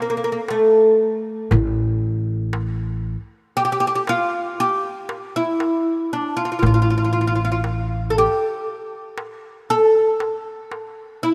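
A fretless oud, plectrum-plucked with a woody double-string ring, leads this soulful, melancholic Turkish makam fragment from 0.0 seconds. It moves at 118 BPM in a straight 10/8, spanning A3 to A4 and sitting up front. A crisp metal-shell darbuka, close and dry under hard hands, joins at 0.5 seconds, and a growly, steel-strung pizzicato upright bass holds A1 up front from 1.5 to 8.3 seconds, all set in a lush hall reverb with a rough home-demo sound.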